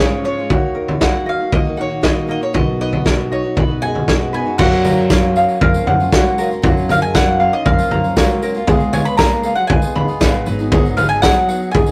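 A straight 4/4 pulse at 117 BPM drives this nostalgic, uplifting indie folk piece in F# major, a fragment cut from a longer song whose arrangement keeps building. A loose drum kit enters at 0.5 s and sits up front, with a punchy kick, a medium-tuned snare, toms and crash cymbal, all gritty and saturated with a rolled-off top. The mandolin carries the melody with a woody, double-stringed tone, while a bright, light ukulele fingerpicks arpeggios above a bed of acoustic guitars: a full-bodied, fingerpicked plugged-in jumbo that drops out at 6.6 s and a boxy, picked concert guitar that plays throughout. A dark, thumpy pizzicato upright bass anchors the low end from the background. A mellow, distant French horn with light vibrato adds a classical-style second line from 3.8 s, and a jingly, compressed tambourine joins faintly as the chords move through F#maj7, C#7 and G#m7. The whole take has the rough character of a rehearsal room, with light reverb and tube saturation lending a warm, lived-in glow.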